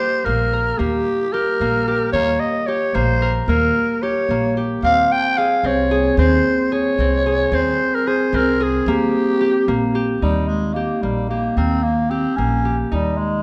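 A reverberant recital-hall sound surrounds this contemporary chamber piece, with a rounded, mellow top end and a hopeful, shimmering mood. It moves in an uneven 5/8 at 223 eighth-note beats per minute with a straight feel, centered in E-flat mixolydian. A growling clarinet carries the melody as a jazz-style solo, its tone clear yet breathy and raspy, gritty at the edges, with vibrato and a soft attack. Beneath it, a concert harp rings out fingerpicked arpeggios in a warm middle register, while a woody, thumpy pizzicato upright bass with steel strings joins at 0.3 seconds. The harmony moves from Eb7 to Bbm11/C and settles on Eb at 8.9 seconds, with a new section opening at 10.2 seconds before this cut from a longer piece ends.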